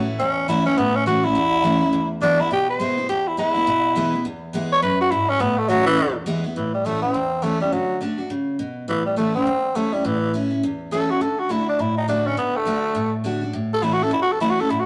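Rowdy and rollicking, this brief rock excerpt swings at 207 BPM in A major, with a raspy, growling tenor saxophone carrying the melody up front (soloing for the first 6.6 seconds) over a bright, full-bodied picked steel-string acoustic guitar with audible finger squeak, all set in a moderate stone-room reverb that gives it the rough feel of a rehearsal-room take.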